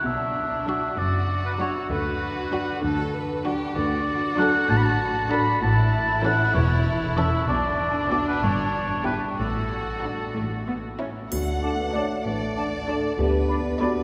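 Drenched in a cathedral-sized reverb, this short cut from a longer cinematic cue has a magical, whimsical glow and a gently lilting compound metre. From 0.0 s a distant, roomy oboe sits up front in a countermelody, while a violin section with expressive, close vibrato carries a second line in the background. A smooth, even violin section holds the main melody over a lush viola section, a clear, distant cello section and a focused double bass section that anchors the low end, all bowed. At 11.3 s the cue brightens as a woody, round marimba with soft mallets takes up the tune, a tight French horn section with a soft attack holds chords, and a triangle adds a close, dry touch in the background. Moments later a very quiet clarinet and a pure, hollow concert flute join with brief second lines, lending the playful ending an airy sparkle.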